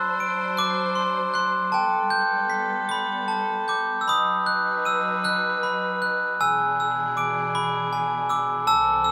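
Innocent and sleepy, this short lullaby for children drifts in a gently rubato 6/8 at about 52 beats per minute, cut from a longer piece. A glockenspiel struck with brass mallets carries the melody from start to finish, ringing high and up front with a bright, sparkling, bell-like tone. Beneath it, a small chamber string ensemble holds sustained bowed chords across the full 9.1 seconds, sitting well back in the mix with a clear, smooth top that still has a biting, intense edge and audible vibrato. The harmony moves from D7 to Gadd9 in the opening section, then shifts at 4.1 seconds to B and on to E7/B for the second section. A moderate recital hall reverb gives the pairing a soft sense of space around the chiming melody.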